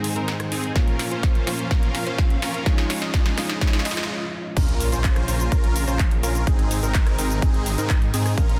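Festival progressive house in a euphoric, anthemic mood, where a dark, worn baby grand piano with tape echo, distant bowed strings and huge, bright supersaw chords all pump under sidechain through a build-up with a big-room kit fill of punchy snare, metallic hats, handclaps and cabasa, joined by a very quiet riser and impact from 0.7 seconds and an up-front electronic kick from 0.8 seconds, until the piano stops at 4.6 seconds and a thick, saturated detuned saw bass with chorus arrives for the drop in a dense, heavily limited master.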